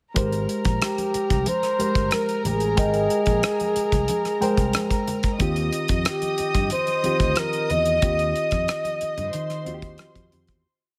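A softly reverberant studio sound frames this short, smooth 1970s-style soul piece, where a breathy, dark flugelhorn with vibrato and scooped notes sings intimate hook phrases up front over a reedy, slightly out-of-tune electric piano in spring reverb, floating sul tasto strings playing long high lines, a punchy fingered bass with ghost notes and chromatic approaches, a tight, dry 70s drum kit on hi-hat, kick and rim click, and very quiet syncopated congas, moving from Abmaj9 to Eb69 before fading out from 8.0 seconds.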